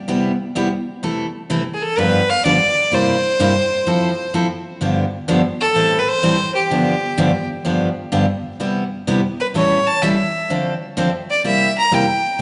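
Country in a playful, swinging mood, this brief excerpt cut from a longer piece rolls along in 4/4 with a swung eighth-note feel. A bright, full-bodied picked steel-string acoustic guitar sits up front from the opening, laying down the accompaniment through jazzy seventh and sixth chords. At 1.7 seconds a single bowed fiddle enters with the melody, clear and biting yet earthy, its airy bow and light vibrato heard close and up front. Both instruments carry a slapback echo, and a moderate plate reverb hangs around them. The sound is that of a live gig heard through the venue's PA, with club reverb and a dulled top end.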